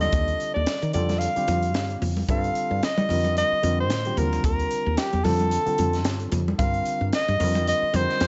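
From the first beat, a mellow soprano saxophone sings a soaring, slick jazz-fusion melody with vibrato, scooped notes and a soft attack, up front over a growly, round fretless bass with subtle chorus, a dark concert grand piano comping through Ebmaj9, Dm7/F, Gm7 and Fsus24 chords, a crisp drum kit with a high-tuned snare and punchy kick in a pumping small room, and thin-skinned, damped congas in the background, all moving at 112 BPM with a light swing in this short cut from a longer piece.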